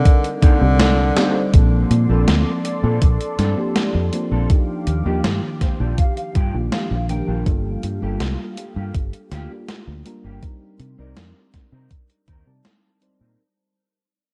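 A cassette-tape haze with light reverb and digital ambience wraps this faded, dreamy vaporwave excerpt, cut from a longer piece and moving at 81 BPM in a straight 4/4. A clear, punchy tenor saxophone opens with a brief solo phrase through tape echo, alongside a soft, round FM electric piano whose decaying chords shimmer with lush chorus and analog delay. A thumpy, up-front electronic kick and a gated 80s digital drum machine with hi-hat and a gated reverb snare set the pulse, and a drum fill at 1.2 seconds leads into the longer second section. From there the sax drops away, a thick, detuned unison pad enters with slow-attack sustained chords, and the whole passage begins a long fade-out. A dark, clean electric guitar riff, roughened by 12-bit sampler grit and a low-pass filter, sits low in the mix and breaks into a fill around 5.2 seconds, while a fingered electric bass stays foam-muted and up front under a drifting progression from Cm7 through Bbmaj9, Ebmaj9 and Gm7 back to Cm7.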